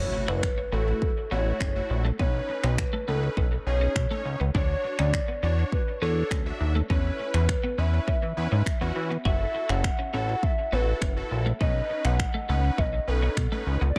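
A straight pulse of punchy layered kick and finger snaps drives this confident, bittersweet dance-pop fragment, while a glossy, nasal chorused synth bass pumps up front beneath a fat, detuned polysynth cycling through minor-seventh and added-ninth chords. A hollow, woody clarinet-like synth lead carries the melody with soft vibrato, and a twangy, clean twelve-string electric guitar riff sits in the background, both trailing dub echo. A faint electronic impact marks the opening 2.2 seconds, and the mix stays dry yet echo-heavy.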